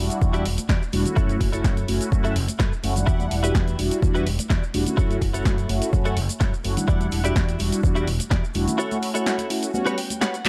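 Groovy and sensual, this filtered disco house excerpt moves at 126 BPM in a straight 4/4, centred on E dorian and tuned to A4 = 439 Hz. Mellow synth brass carries the accompaniment from the first beat, its detuned sawtooth tone round and dark, sitting up front with chorus, phaser, vibrato and a filter sweep, all pumping against the sidechain. A fingered electric bass, foam-muted and amped, pumps along with it and drops out at 8.6 seconds, while a punchy electronic kick with a tape-warm edge leads the mix until 8.4 seconds. An analog drum machine adds handclaps, hi-hat, shaker and a punchy snare with a short room, alongside very quiet, close and dry maracas and congas played with hard hands. A bright, twangy clean electric guitar, recorded direct, picked and compressed with analog chorus, plays a riff over chords moving between Em9 and F#m7 before a fill from 9.7 seconds lands on Gmaj7#11, all within a dark production of light reverb and digital ambience.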